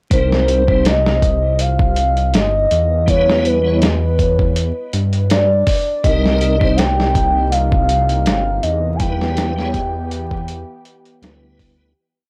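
A looped, edited breakbeat sets a slow 81 BPM trip hop groove in 4/4 with a lazy 16th-note swing: a thumpy kick, a medium-tuned snare and hi-hat from a sampler-style kit, compressed, overdriven and re-recorded in a small room so it sits gritty and up front. Beneath it, a dark, detuned sawtooth bass rumbles and beats with long gliding notes, thickened by transformer saturation. A tonewheel organ plays held chords with syncopated pushes, its piping tone carrying key click, light overdrive, chorus vibrato, a slow rotary speaker, harmonic tremolo, a low-pass filter and tape echo. Over this, a pure, breathy sine lead sings call-phrase motifs with vibrato and portamento, softened by analog chorus and tape echo, while a warbling, nostalgic pad enters at 6.0 seconds in the background with mellow, lo-fi sustained chords and its own reverb. The harmony alternates between Cm7 and Em, giving a cinematic, melancholic mood, and the dry, gritty recording with vinyl crackle fades out from 8.0 seconds to the end of this short piece.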